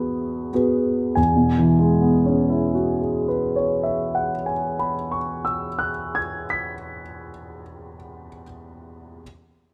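An intimate grand piano with audible action noise and long sustain sits up front in this serene, hazy fragment of impressionist solo classical piano in E major, drifting in a rubato 5/4 at 52 BPM and easing its pace through the opening 1.2 seconds before moving from an Eadd9 to an E69 chord, its natural tone, spanning E2 to B6, captured by close, detailed microphones and bathed in moderate concert-hall reverb.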